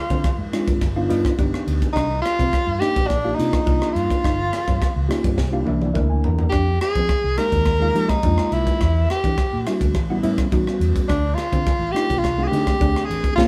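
A live band in one room with moderate studio reverb drives this funky, bright electric jazz fusion passage, cut from a longer piece, at 105 BPM in straight 4/4. An edgy, forceful tenor saxophone leads up front with vibrato and jazz phrasing, over a saturated, gritty drum kit with a punchy kick and high-tuned snare, an amped fretless bass, and a reedy, clean electric piano heard through its built-in speakers. A dark, fingered electric guitar adds stabs in the background, while drums and electric piano share a fill from 5.4 to 6.5 seconds across a changing progression that settles on Dm7.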